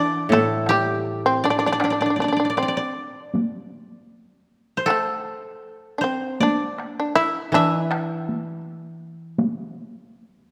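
A moderate stage reverb gives this short cut from a longer Japanese chamber piece a sense of open space, while the main players sit up front. At a rubato 80 BPM in 4/4, the mood is austere and calm, built on a D suspended pentatonic scale. A bright, woody koto played with fingerpicks carries the melody from G4 to G5, with a dry edge to its tone. Beneath it, a plectrum-plucked, fretless shamisen adds a buzzing, percussive second line in the lower register, with a warm body. A second koto, mellow and low, supplies accompaniment at the start and returns at 7.5 seconds. A taiko ensemble struck with heavy sticks enters at 0.3 seconds, its compressed, saturated hits sitting close and up front.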